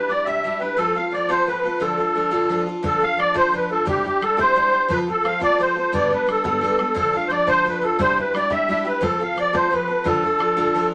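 A reedy, shimmering musette accordion carries the tune up front from the very start, over a bright, full-bodied picked steel-string guitar whose fresh strings let a little finger squeak through. This wild, dark and lively Celtic jig in 6/8 moves through Cadd9, F and Dm, and at 2.8 seconds a boomy, close and dry bodhran joins in. A moderate studio reverb surrounds this short cut from a longer piece, and the accordion keeps a vintage, band-limited edge.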